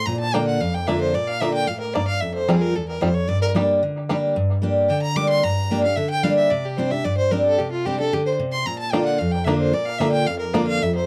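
A dry, close 1970s-style studio sound with light reverb frames this lonesome, driving bluegrass excerpt at 223 BPM, where a clear, focused bowed fiddle with light vibrato carries the melody up front over a full-bodied picked dreadnought guitar, joined from 0.3 to 4.2 seconds and again at 8.9 seconds by a twangy, percussive fingerpicked banjo melody with tape echo, over chords of Bb, Fsus2, Gm and Csus2.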